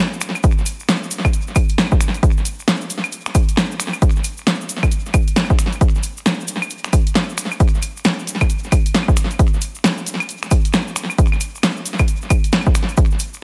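Bouncy and late-night, this 13-second UK garage cut moves at 134 BPM in 4/4, its sixteenths swung at 62%. An up-front electronic kick drum with an analog punch anchors the groove from 0.4 seconds. A punchy analog drum machine supplies claves, finger snaps, hi-hat and a punchy snare, sitting forward in the mix and touched with tape echo. Behind them, a grainy, bright cabasa sits close and dry in the background, also carrying tape echo. Light reverb and digital ambience give the echo-heavy mix a sense of space around the percussion-only arrangement, which holds to a single section throughout.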